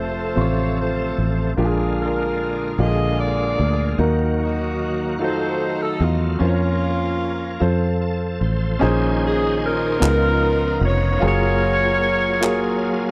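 The sound is dry and close, like a 1970s studio recording, with the saxophones, piano and bass set near the listener. This is a slow, solemn and soulful gospel piece in 6/8, moving at 50 beats per minute in dotted quarters. A jazz-styled saxophone section carries the melody up front with a clear tone, light vibrato and a smooth top. A concert grand piano accompanies with natural, long-sustaining notes and a deep low end. A fingered electric bass sits round, dark and foam-muted beneath them. A bright tonewheel organ holds full, shouting chords through a slow rotary speaker with chorus vibrato, and plays a fill at 7.6 seconds. The harmony moves through chords such as Bb7, F7b9 and Db13 before settling into Bb minor at 8.8 seconds, and hollow, human group handclaps join at 10.0 seconds.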